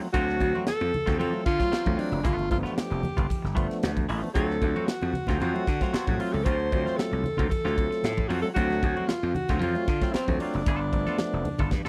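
A straight 4/4 funk groove at 114 BPM rides on a crisp fusion drum kit with a tight kick and airy cymbals, a growly, overdriven slap bass punching up front, and low-tuned congas ringing in the background, with a drum fill at 11.7 seconds. Over chords moving between D7#9 and G9 in D mixolydian, a breathy alto saxophone carries an intimate, whispered lead with vibrato, while a scooped, twangy electric guitar with lush chorus plays accompaniment and a fat tonewheel organ adds overdriven stabs through a slow rotary speaker and tape echo until 11.5 seconds. This energetic, gritty excerpt has the dry, close sound of a 1970s studio.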